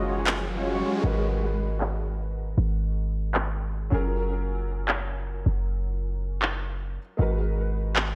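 Future bass with a dreamy, bittersweet half-time feel: a dark, clean electric guitar melody, an airy, detuned supersaw riff and an electronic riser sound together until 1.0 seconds. Underneath them, an intimate baby grand piano with audible action noise and a deep, boomy 808-style bass carry on throughout, joined by up-front electronic handclaps that enter at 0.3 seconds and take on a filter sweep, all set in a lush, reverb-soaked hall.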